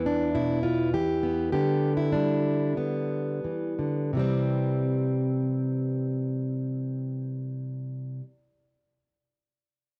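A fingerpicked, plugged-in steel-string acoustic guitar with a full-bodied jumbo tone and fresh strings sits up front in this gentle, hopeful solo folk fragment in C major, moving in straight 4/4 between roughly 86 and 105 BPM, slowing through its opening seconds as Em gives way to G/D at 1.5 seconds before settling on C at 4.1 seconds, all carried by cassette tape character, light reverb and the ambience of a small room in a home recording.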